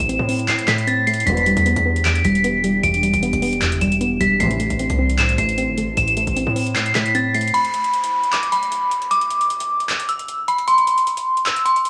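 Menacing and melancholic, this half-time trap cut at 153 BPM moves between A minor and E minor seventh chords. An eerie, warbling detuned FM synth bell carries the melody up front over a soft, round pluck, a glassy, ethereal pad in the background, and a saturated, aggressive 808-style bass. Metallic-hatted trap drums with handclaps run throughout, while muted, veiled strings add brief bowed stabs. At 7.5 seconds the pluck, pad and bass stop and the kick drops out, leaving the bell, hats and claps, softened by a cassette-tape haze and small-room ambience, over an electronic downlifter.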